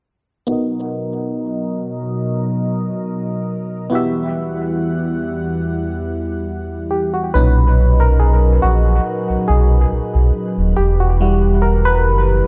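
A glassy FM electric piano and a lush, detuned unison pad open together at 0.5 seconds, the piano up front with its bell-like attack and noise layer while the thick, warbling pad holds sustained chords behind it. This dreamy, smooth R&B passage, cut from a longer piece, moves in a gently swung 4/4 between Bmaj7 and Emadd9 chords. Through the opening section a filter sweep shapes the sound, and the piano's decaying notes carry chorus and dub echo that give the mix its echo-heavy, lightly reverberant feel. At 7.3 seconds the piano takes a solo as a deep, full sub bass with an octave layer enters up front, its sine-and-triangle tone sustaining under the vintage, slow-blooming pad until the close at 12.5 seconds.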